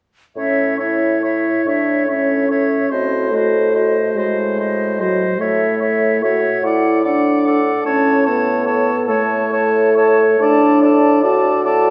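An airy, metallic silver flute sings the melody with soft-attacked vibrato in this tender, warm slow romantic movement for wind quintet in a rubato 6/8. A distant oboe with light vibrato carries the second line, an up-front mellow French horn and a background clarinet supply accompaniment, and a vintage-toned bassoon sits on a low A2 bass, all inside a reverberant recital hall as the harmony moves from A through Adim7 to D/A.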